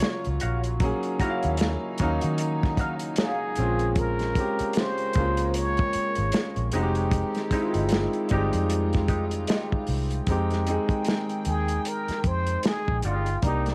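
Smooth and introspective, this R&B and neo-soul passage, cut from a longer piece, moves at 76 BPM in 4/4 with a swung sixteenth-note feel, opening in F phrygian before settling into F minor at 10.3 seconds. A plunger-muted trumpet carries the melody up front with a breathy, jazz-style voice, vibrato and a soft attack, its line treated with cassette tape and analog delay, and it returns for a short solo in the closing seconds. A clear concert grand piano with deep bass and long sustain provides accompaniment through the chords Ebm9, Bbm9 and Fm9, while a dark, slightly broken-up electric guitar through a small old amp plays a second line in the background, colored by wah, spring reverb and tape. Underneath, a muffled, dry soul drum kit with a tight kick and medium-tuned snare sits up front beside a round, foam-muted fingered bass that enters at 0.3 seconds. A very quiet studio string section floats sustained, bowed sul tasto chords beneath it all, and the whole piece has the light reverb and lo-fi grain of a home cassette recording.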